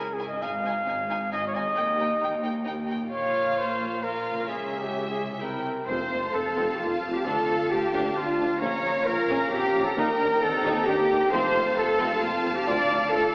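Heard from further back in a reverberant concert hall and filtered through a thin AM-radio tone, this cinematic passage, cut from a longer piece, moves at 133 BPM in a straight 3/4 with a triumphant, soaring mood. In Ab major, a rich, distant violin section carries the bowed melody with vibrato, while a second violin section adds a smooth supporting line in the background and a very quiet viola section fills in expressive, sliding accompaniment. Cellos and a lush double bass section anchor the low end, a mellow trumpet places soft-attacked stabs in the background, and a faint concert harp rings out thumb-plucked arpeggios. At 5.9 seconds the music shifts into F mixolydian, and the ensemble grows: a pure, crisp-attacked flute ensemble and a roomy oboe add second lines, a dark French horn section holds sustained chords, and a tuba deepens the bass. A round, close and dry timpani on F2 sounds between 5.9 and 6.5 seconds, marking the change as the chords cycle through F, Dm, Bbm and Eb.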